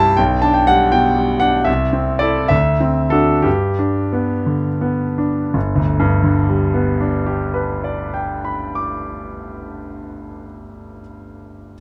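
Passionate and warm, this brief excerpt from a romantic classical character piece features a solo concert grand piano playing in 6/8 with free rubato, easing into a slowdown between 0.9 and 5.5 seconds over a progression that comes to rest on G. The piano sounds clear, smooth and up front, with a deep bass and a vintage quality, spanning from G1 to D6. A light reverb and a dark, warm production frame the playing as it moves from an opening section into a second one at 5.5 seconds.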